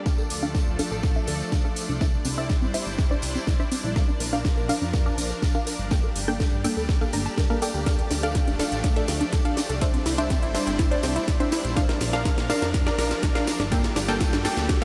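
Progressive house at 123 BPM in D minor, this bittersweet, emotional build-up cuts from a longer piece and cycles through Dm, Cadd9, Bb and Gmadd9 under a dreamy wash of huge ambient reverb. A lush supersaw pad with slow attack and long release holds sustained chords while a tight, mellow sequenced synth arpeggio sits in the background and detuned unison pluck stabs with a noise layer ride diffuse delay, both under filter sweeps, with sidechain pumping on pad, arpeggio, plucks and the fat, wave-folded analog bass that enters at 0.3 seconds. A punchy, tape-warm kick sits up front beside a house kit of cracking snare and metallic hats playing a drum fill, a jingly tambourine adds sparkle, and a very quiet riser and reverse cymbal arrive at 10.9 seconds.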